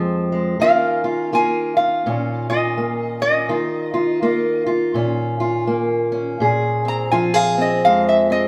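Blues with a smoky, mournful mood, played at an unhurried swing in this short clip cut from a longer piece. A fingerpicked steel-string acoustic guitar opens at 0.0 seconds with a dark, boxy parlour tone, laying down the accompaniment in its lower and middle register. At 0.6 seconds a metal-body resonator slide guitar enters and carries the melody as a solo played with a steel bar and fingerpicks, its metallic, nasal voice singing high above the accompaniment. Both guitars sit up front, sounding like a band playing live together in a stone room with a wet reverb that lends the performance a lingering air. The harmony moves from a rootless Bb7sus2 to Ebsus2 and settles on Bbsus2 at 6.4 seconds, and those open, suspended chords keep the mood unresolved and brooding.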